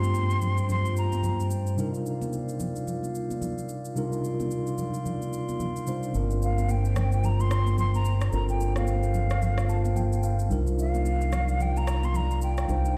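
Heard through a big sound system in a bare stone room, this hypnotic, soulful amapiano cut sets a clean tine electric piano, which plays a fill at 9.4 seconds, over ethereal glass harmonica chords, layered electronic shaker and rim click, and bright, high-tuned congas in the background. A breathy concert flute with vibrato and delay floats in at the start and returns at 6.4 seconds, just after a round, punchy fingered bass with an envelope filter arrives up front at 6.1 seconds.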